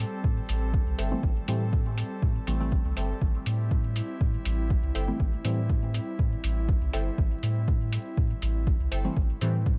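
Dub techno at 121 BPM in A minor, this meditative, cavernous excerpt rests on a single Am7 chord under a dark production with vinyl crackle and little reverb. A round, soft sub bass sits up front from the start, pumping with the sidechain beneath an airy, breathy pad whose slow-attack chords carry chorus and a detuned, noise-laced shimmer. A punchy, layered kick arrives at 0.2 seconds, joined by a muffled, pitched-down hi-hat. From 1.1 seconds a deep, mellow chord stab with chorus, phaser and dub echo evolves through a filter sweep, dropping out at 5.6 seconds and returning near the close. In the background, a crisp, wave-folded wavetable stab plays a bright, short-decay riff soaked in dub echo, its moving notch adding a digital glint.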